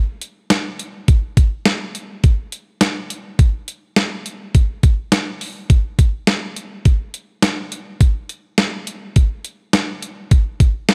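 A straight 4/4 pop groove from a detuned 8-bit digital drum machine, with a thumpy kick, medium-tuned snare and hi-hat sitting up front, enters at 0.2 s and runs to the cut at 10.9 s, its sampler-style, tape-warm electronic tone re-recorded in a small room and lightly reverberant, setting the mood of this cool, melancholic fragment.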